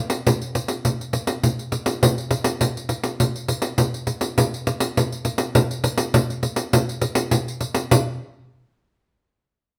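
A lone pandeiro opens this joyful, sunny samba at 0.1 s, setting a straight 4/4 pulse at 102 BPM. Its tone is jingly and acoustic, captured close and dry and placed up front. The surrounding studio space adds a reverb tail of 0.9 s. The pandeiro stops at 8.0 s, and the closing section runs on until 9.8 s. Cut from a longer piece, this fragment gives a bright, percussion-only snapshot of the groove.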